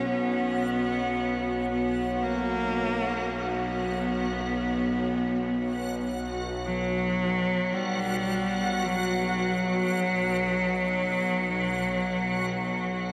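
A rich, up-front solo cello sings a smooth, vibrato-laden melody between F#3 and B3 through shimmer reverb and delay, floating in free time over a fading, dark detuned analog pad on a B5 chord, a tense string-like drone on B1 and a reversed, granular, swelling texture on F#4, all in an unsettling, cavernous ambient excerpt tuned to A4 = 436 Hz and soaked in a huge reverb with a 7.0 s tail.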